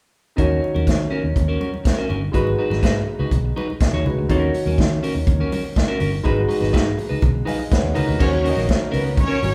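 Up-front vintage drums with a punchy kick and dark cymbals drive this sultry disco excerpt, joined by amped fingered bass, dark picked clean electric guitar, an open, long-sustaining baby grand piano that plays a fill at 7.2 s, and very quiet, dry congas, before a lush, bowed symphonic string section with vibrato enters at 8.2 s, all in a large studio room.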